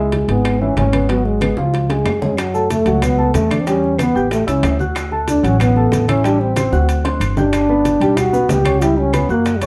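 A mellow trombone carries the melody up front, close-miked and soloing in a jazz style with light vibrato and a soft attack, in this sultry, fiery Afro-Cuban jazz excerpt cut from a longer piece at 186 BPM in a straight 4/4. Beneath it, a warm upright piano supplies accompaniment, while a thumpy, woody pizzicato upright bass with steel strings sits prominently in the mix. The percussion layer blends tight, high-tuned bongos played with hard hands, thick-skinned, low-tuned congas kept very quiet, and ringing metal-shell timbales heard close and dry, joined by claves in the background and grainy maracas that enter at 2.4 s. Drum fills mark 1.4 s and 6.6 s as the harmony moves from C#m7 through F#m7, A7, D69 and Gmaj7 before settling on Em69/C#. The band plays live in one room with moderate studio reverb, giving the whole a natural, shared space.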